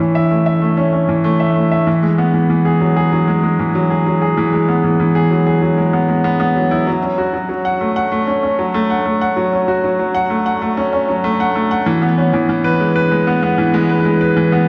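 A clear grand piano sits up front in a wet concert hall reverb, its natural tone carrying a long sustain that lets each note bloom into the space. Though framed as electronica, this short cut from a longer piece is given entirely to the solo piano, moving at 96 BPM in a straight 4/4. The mood is intimate and moving, with the instrument ranging from E3 up to F#5. After an opening passage, a new section arrives at 6.9 seconds and builds through to the close at 14.7 seconds. The hall's lingering decay gives the unaccompanied piano a spacious, resonant presence throughout.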